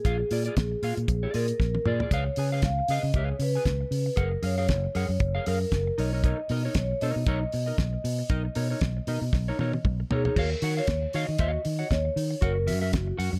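In a small room, this driving, danceable disco cut at 116 BPM in Eb minor swings its sixteenths as a ringing vibraphone with soft mallets and a slow motor vibrato carries the mellow melody over a clean, chorused electric guitar, a round, punchy fingered bass sitting up front, and a damped 70s kit with a fat snare and tight kick, with drum fills at 1.6 and 9.3 seconds leading into new chord passages.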